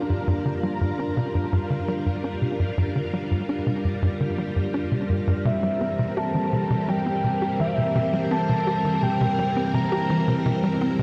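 Ambient, sequencer-driven space music in G dorian at 84 BPM, this cosmic, hypnotic excerpt from a longer piece sets a punchy sawtooth sequencer bass riff with tape echo and a filter sweep under lush string-machine chords, which sit up front with ensemble chorus and a slow attack across the full 11 seconds. At 5.5 s, as the harmony moves from Gm7 to C7, a soft, round octave-layered synth lead enters with a high melody, detuned and dark, with vibrato, chorus and tape echo, until 10.5 s. A huge reverb with a 7.8-second tail and a cassette-tape sound bathe the whole mix.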